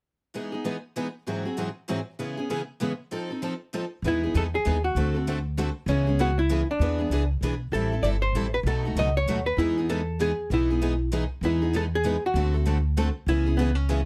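Charming and playful, this swinging jazz manouche piece in 3/4 opens with two picked steel-string acoustic guitars in accompaniment, one an up-front concert guitar with audible finger squeak and the other a bright, boxy parlour guitar, before an up-front, woody, dark pizzicato upright bass enters at 4.0 seconds and a clean, hollow-body archtop guitar, miked and amplified, takes the melody at 4.1 seconds in a close, detailed and nearly dry recording.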